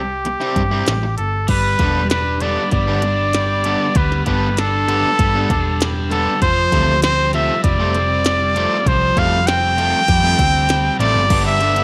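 A straight 4/4 pulse at 98 BPM drives this carefree, jangly indie rock excerpt in G mixolydian, where a vibrato-laden, up-front trumpet carries the melody with slapback echo over a round, punchy hollow-body short-scale bass. A glitchy electronic drum kit with deep kick, tiny snare and clicky hats and a compressed fuzz guitar riff enter at 0.3 seconds, and a cranked stack guitar joins at 1.5 seconds with overdrive and lush chorus, as the chords move from C to Gadd9 and Fadd9 in a light digital ambience.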